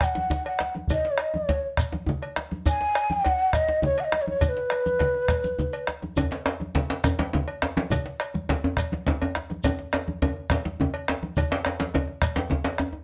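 A 12/8 groove that gradually speeds up drives this earthy, propulsive West African drum ensemble passage, taken from a longer piece. A round, dry bombo sits up front with hard-handed congas, a deep djembe, a metallic cowbell and a grainy shekere, while a hollow, breathy bamboo bansuri plays a tongued, vibrato-laden melody bathed in plate reverb until 5.9 s. At 6.2 s a second djembe, recorded in a small room, joins prominently up front for the closing stretch.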